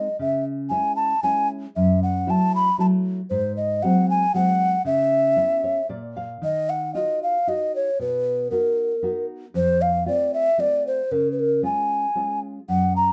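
A breathy, hollow clay alto ocarina with vibrato and a soft attack carries a wistful, passionate Italian folk serenade in 3/4 at 115 BPM, sung up front over a dark, thumb-plucked nylon-string guitar with audible finger squeaks that adds a fill from 5.4 to 6.4 seconds before the music moves from C# minor to Eb minor at 6.4 seconds, all in a moderate studio reverb in this excerpt cut from a longer piece.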